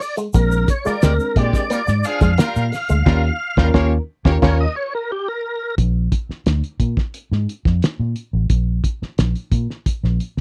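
A gritty, funky excerpt opens with a lightly overdriven tonewheel organ soloing through chorus vibrato and a slow rotary speaker over a twangy envelope-filtered guitar riff, a faint grainy egg shaker and a muffled, thuddy drum kit with a fat snare, as a foam-muted round electric bass and reedy electric piano stabs with fast tremolo join at 0.3 seconds, a clear, tight horn section adds a second line from 0.8 seconds, the band hits an accent from 3.1 seconds, and after the organ stops at 5.8 seconds, bass and drums carry on alone in a dry, close 1970s-style sound.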